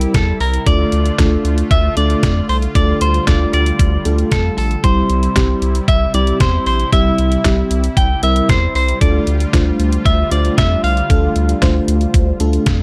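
A detuned 8-bit digital drum machine with a thumpy kick and fat snare sits up front in this wistful, upbeat synth-pop excerpt at 115 BPM, alongside a round, deep analog bass, a clean picked electric guitar carrying the melody, a lush, dreamy FM electric piano with a soft pad layer treated with chorus and tremolo, and a smooth, detuned sawtooth pad with the same chorus and tremolo, over chords alternating between C and Dm in a dry, gritty recording.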